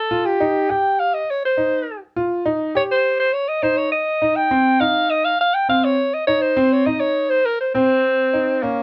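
Progressive instrumental in a brooding, intricate 7/8, cut from a longer piece, where an up-front alto saxophone carries the melody as a solo from 0.0 seconds, its vintage, jazz-style tone shaded with subtone and vibrato. Beneath it, a concert grand piano plays arpeggios with a worn, deep-bass character and long sustain, moving from Fsus2 to C minor and reaching B-flat minor at 8.0 seconds. Light reverb and a dark, warm production give the pair a shadowed feel.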